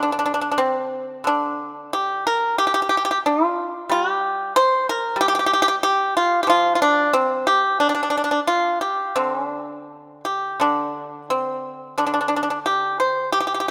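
This is traditional Chinese solo plucked-string music, elegant and contemplative, with a free rubato feel over a loose 4/4 pulse. A single acoustic pipa plays alone for the whole 13.7 seconds, moving between D3 and C5. Played with fingerpicks, its tone is percussive and dry at the source, with a warm body that sits up front in the mix. A moderate concert-hall reverb lends the notes a graceful halo of space. The passage is a fragment lifted from a longer piece and unfolds as one unbroken section.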